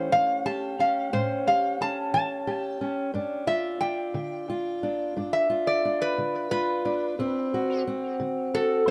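A cassette-tape recording soaked in echo and wet spring reverb, set in a small room, carries this brief acoustic country blues excerpt, laid-back and swaggering at 60 BPM in a straight 12/8. Up front, a metal-body resonator guitar, played with fingerpicks and a steel bar, sings the melody in a metallic, nasal voice, soloing from 0.0 to 8.9 seconds through tape echo. Beside it, a fingerpicked steel-string acoustic guitar with old strings gives a woody accompaniment, moving through A7, G7 and D7.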